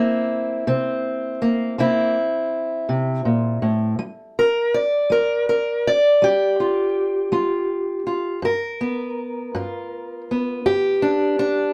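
A fingerpicked steel-string parlour guitar sits up front, its dark, boxy tone carrying this rollicking, soulful slice of acoustic country blues in a straight 12/8. Played solo across its roughly 11.7 seconds, it moves from C7 to G7 at 4.0 seconds, spanning a range from G2 to D5. A moderate studio reverb lends the room a touch of air around the instrument.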